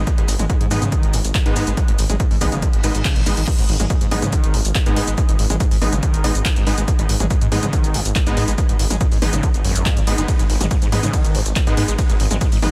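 Hypnotic and industrial, this cut from a longer driving peak-time techno piece runs at 141 BPM in G# minor, where a barely audible deep, warbling ambient pad drones beneath the opening until a quiet reverse cymbal rises into the drop at 3.5 s with a soft impact. Beneath it all, a punchy layered electronic kick drives the track, while a tape-warm analog drum machine of hi-hats, handclaps, shaker, toms, crash and ride, a thick, menacing detuned saw bass, a bright rave stab entering at 0.7 s, and a squelchy, screaming distorted acid riff with tape echo set in the background all pump to the sidechain in a dry, dense, heavily limited mix.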